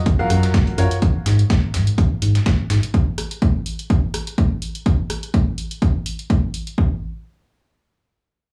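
A swung 4/4 pulse at 125 BPM drives this feel-good, uplifting piano house cut in F# major, where a punchy, up-front electronic kick and a tape-warm analog drum machine's hi-hat and rim click run to about 6.9 seconds, a gritty sampler-style kit adds filtered hats and a fat, compressed snare, a hollow, dark organ-like FM bass with tube saturation and sidechain pumping plays until 2.8 seconds, and a clear but boxy grand piano riff over F#maj7 sounds briefly with tape echo, in a dry recording with small-room ambience and cassette tape character.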